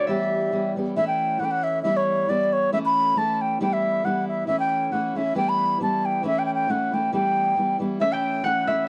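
Recorded at home on cassette in a moderate studio room, this short cut from a longer Celtic polka moves at a spirited, wild 136 BPM in 2/4 with a light swing, its chords alternating between Em and A/E. An airy, crisp-attacked baroque flute, up front and given a cassette-tape tinge and plate reverb, carries the melody with a straight, woody tone throughout. A fingerpicked steel-string acoustic guitar with an auditorium body keeps the accompaniment going beneath it, while a ringing concert harp, also touched with plate reverb, adds a second line only from 0.0 to 1.8 seconds and again from 8.0 seconds.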